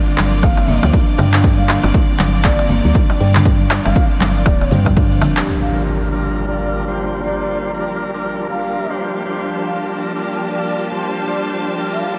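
Afro house at 119 BPM in G minor, this short cut from a longer piece feels spiritual and driving, with a swung 16th-note groove and a dreamy mix soaked in cathedral reverb. For the first 5.5 seconds a punchy, overdriven electronic kick sits up front with layered, overdriven handclaps, while very quiet congas, a deep clay-shelled darbuka and a grainy tube shaker fill in the percussion. A woody, round FM bass pumps under the sidechain, and a marimba played with medium mallets runs arpeggios through tape echo over a Gm7 chord. A lush, biting string section holds sustained chords from a distance throughout, and a breathy bamboo bass bansuri carries the melody with vibrato and tape echo. At 5.5 seconds an electronic impact lands as the groove drops away and a filter sweeps across the strings, and from 5.7 seconds a thick, lightly overdriven tonewheel organ plays stabs through a slow rotary speaker, pumping and echoing up front.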